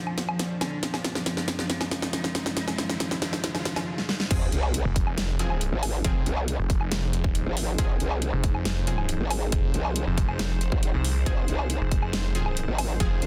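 Dense, heavily limited and lightly reverberant, this excerpt of heavy wobble dubstep is menacing and chaotic, with a half-time feel. It opens on a build-up in which a single rich, bowed cello sings a focused vibrato melody through dub echo until 3.9 seconds. Beneath it sit an evolving, morphing wavetable pad with chorus, phaser and sidechain pumping, sustaining in the background, and a very quiet, cloudy granular pad. A very quiet electronic riser and sub drop adds tension while the dubstep drum kit, up front with a huge snare, metallic hats, woodblock and crash cymbal, runs fills into the drop. At 4.3 seconds the drop lands with a punchy, tape-warm electronic kick, a saturated growl bass that wobbles through a formant filter, and bold, bright orchestra-hit-like synth stabs carrying cassette tape colour and dub echo. A snarling, detuned saw bass with a resonant moving notch joins at 4.9 seconds, and its distortion thickens the aggressive low end.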